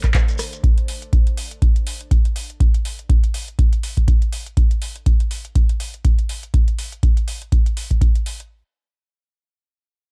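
This hypnotic, driving acid house excerpt at 122 BPM, swung on the sixteenths, opens with a deep, up-front electronic kick, an analog drum machine's handclaps, rim clicks and metallic hats, a grainy, close shekere and a very quiet, blurred granular cloud pad, the last two gone by 0.6 s. A smooth, warbling, detuned sawtooth pad with chorus and sidechain pumping holds a D5 chord in the background until 4.5 s, leaving the kick and drum machine to carry the groove, the kick until 8.1 s and the drum machine until 8.5 s. The production is dark and warm, set in a digital ambience.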